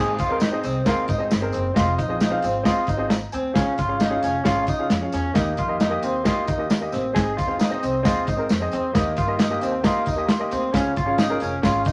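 A moderate studio reverb surrounds this brief cut from a longer 1960s-style soul track, with piano, guitar and drums placed up front. A bright, twangy electric guitar through a small old amp plays a picked, slightly broken-up riff, while a grand piano with long sustain and a present tone carries the accompaniment over chords moving from Ab through Fm7, Db and Eb. Beneath them, a pizzicato upright bass with steel strings adds a woody, growly low end. From 0.2 s a dry, dark drum kit with a smooth, medium-tuned snare, tight kick and rolled-off top drives a straight, uptempo groove, joined by a jingly tambourine sitting close in the background. The piano steps out with a fill from 9.4 to 10.7 s, keeping the joyful, danceable feel going to the end.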